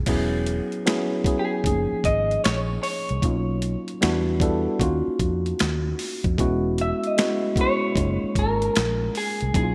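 A swung 16th-note pulse at 76 BPM in 4/4 sets a smooth, relaxed neo-soul and R&B groove in F# major, heard in a short cut from a longer piece. A sampler-style boom bap kit sits up front, compressed and pitched down, with a thumpy kick, high-tuned snare, hi-hat, finger snaps and crash cymbal, all given a gritty edge and a gated reverb. Beneath it, a vintage muted fingered electric bass plays dark, round and punchy in the low register, while a worn, slightly out-of-tune tine electric piano, played clean through a combo amp, carries the chords up front. At 1.4 seconds an electric guitar through a small old amp takes the melody, its picked, slightly broken-up, lo-fi tone bathed in spring reverb. The harmony moves through lush extended chords such as F#maj13, Bmaj9#11 and D#m9, and the whole is framed by light reverb and a bright 1980s-style digital production.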